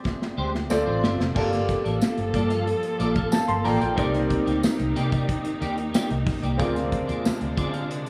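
A concert grand piano sits up front with a natural tone and deep low end, treated with a lush chorus and playing accompaniment through this slick, nocturnal slice of polished 1980s jazz-funk pop in G minor at 92 BPM in a straight 4/4. A modern studio drum kit opens with a fill from 0.1 to 1.4 seconds, its dark, smooth acoustic sound carrying a tight kick, a medium-tuned snare, hi-hat and crash cymbal under gated reverb. A vintage muted fingered electric bass arrives at 0.4 seconds with a round, punchy, foam-muted tone, while a clean, picked electric guitar plays a riff coloured by ensemble chorus. At 1.4 seconds a bowed string section enters with vibrato, holding sustained chords in an even, silky blend as the harmony moves through Gm9, Cm9 and Bb9/D. A jingly, compressed tambourine adds a saturated shimmer lower in the mix, and a light small-room ambience frames the ensemble.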